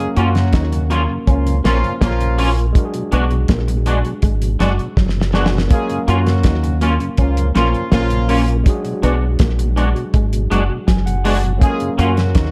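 A cloth-damped, thuddy drum kit with a fat snare and slapback echo sits up front beside a round, punchy dub bass in this sweet, smooth lovers rock reggae excerpt, while twangy chorused guitar stabs, a dark, slightly broken-up guitar riff in spring reverb, a barky overdriven tine electric piano with slapback echo that takes a fill at 10.5 seconds, a very quiet tonewheel organ on slow rotary, and a distant, mellow horn section playing a tight second line fill out a small room.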